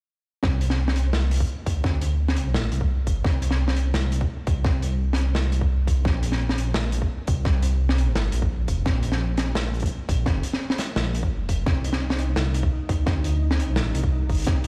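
A rumbling, detuned sawtooth bass sits up front in this dark, cinematic half-time drum and bass excerpt, its saturated tone beating over a Csus2 to Bbsus2 to Cmadd9 progression. A tight, layered electronic kick sits alongside a gritty breakbeat kit of hi-hat and snare with a rolled-off top. At 11.8 seconds a bright, pulsing gated texture with chorus and reverb enters in the background, while the whole piece sounds as if played through a big sound system in a bare stone room.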